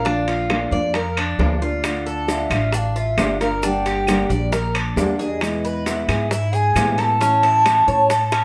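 Nostalgic yet danceable, this D minor Cuban son and guajira passage moves at 134 BPM in a straight 4/4, cycling through Bb, Dm, Gm, E and A. An airy, softly attacked bamboo bansuri carries the vibrato-laced melody, bathed in slapback echo and plate reverb, over a full-bodied fingerpicked nylon-string guitar, metallic double-strung tres arpeggios and a dark pizzicato upright bass. Tight, high-tuned bongos, ringing metal-shell timbales, woody claves and grainy maracas that join at 1.8 seconds fill out the percussion in a moderately reverberant studio, in a short section cut from a longer piece.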